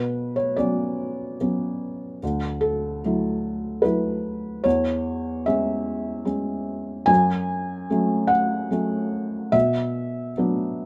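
A felt-muted upright piano plays alone from the start in this wistful, reflective neoclassical minimalist fragment, moving in a rubato 3/4 through Bmadd9, Dadd9, C#m/E and F#m before settling on Bm. The dark, mellow tone sits up front and intimate, with the mechanism's action noise audible, and light reverb around it. The piano is tuned to A4 = 435 Hz, and the passage is cut from a longer piece.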